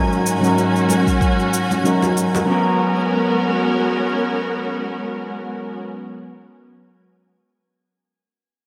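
Sunset chillout in G# minor at 94 BPM, this smooth, warm fragment of a longer piece moves in 4/4 with a gentle swing on the sixteenths. A mellow, clean electric guitar plays fingered accompaniment through a low-pass filter and digital delay until 6.4 s, while a dark studio string section holds bowed, woody chords with vibrato, sounding lush and up front yet distant, until 5.8 s. High above, a twinkling granular texture adds a sparkling, octave-up FM shimmer with a soft attack, long release and its own reverb plus analog chorus, sitting in the background until 2.5 s. A layered, electronic cabasa and very quiet, ringing acoustic congas with hard hands carry the rhythm up to 2.5 s, joined by a deep, up-front electronic kick at 1.1 s. The harmony shifts from D#m7/G# to G#m11 at 2.5 s, all framed by a lush hall reverb and a bright 1980s-style digital production.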